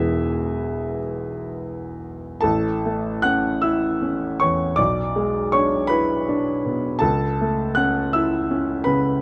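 A dark, softly reverberant recording frames a single up-front baby grand piano, smooth and vintage in tone, playing a dreamy, serene romantic nocturne in A major at a slow, rubato 6/8 lilt of about 41-55 dotted-quarter beats per minute, ranging from deep bass to a high treble across this short fragment as its harmony moves from E to A and on through E7/B and A/C#, with a new section opening at 2.5 seconds.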